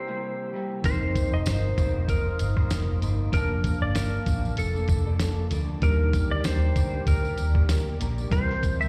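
Heard as if through a venue's PA with a recital-hall reverb, this hazy, dreamy indie and bedroom pop excerpt at 96 BPM in Bb major, with a light 16th-note swing, sets a dark, clean lap steel melody with slide and volume swells over a slightly broken-up electric guitar through a small old amp, a reedy electric piano with fast tremolo and cassette colour, and a warbling, detuned pad in the background. A round, foam-muted bass and a muffled, pitched-down sampler-style drum kit with a thumpy kick arrive at 0.8 s, and a jingly tambourine joins at 0.9 s, as the chords move from C7 through F7sus4, Bbmaj7/F and Ebmaj7 back to C7.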